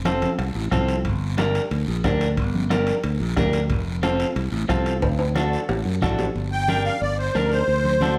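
A straight 4/4 cumbia pulse drives this danceable excerpt at 181 BPM in G minor, moving through F, G minor and D chords before closing on D7. A bright, growly fingered electric bass sits up front and punchy, while a picked, compressed electric guitar at the edge of break-up adds scooped, slightly broken-up accompaniment. In the background, ringing congas, a soft-beater bombo and metal-shell timbales sound as if in a small room, and a raspy guiro stays close and dry. A drum fill begins at 5.0 seconds, and the bombo and timbales drop out just before a new section starts at 6.4 seconds. At 6.5 seconds a reedy musette accordion takes the melody, shimmering, full and dry up front, all within a large studio reverb.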